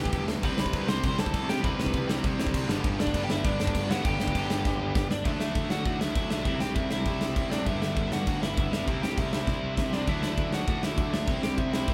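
A biting lead guitar melody opens this urgent, aggressive punk rock passage at 199 BPM, riding over two overdriven riffing guitars, one compressed and one dark, and a growly fuzz bass, with a very quiet double-tracked third guitar joining at 0.4 seconds. A big rock kit sits up front almost at once, its punchy kick, medium-tuned snare and bright cymbals driving the straight 4/4 through C, G and D chords, with fills at 4.6 and 9.5 seconds. The band sounds as if it is playing live together in one room with light reverb, and the clip is cut from a longer piece.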